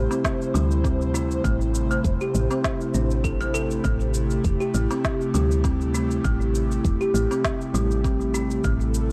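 Meditative and mystical, this organic downtempo excerpt moves at 100 BPM in 4/4 with a light 16th-note swing, resting on an Am7 chord in A minor pentatonic. An airy, breathy pad with chorus and sidechain pumping holds sustained chords up front, while a hollow, thumbnail-plucked kalimba rings out arpeggios through a low-pass filter and tape echo, and a round, woody FM bass with sidechain pumping anchors the low end. A deep electronic kick and a tape-toned cabasa and snare, re-recorded in a small room, sit under light digital ambience on a dry, gritty cassette recording with transformer saturation.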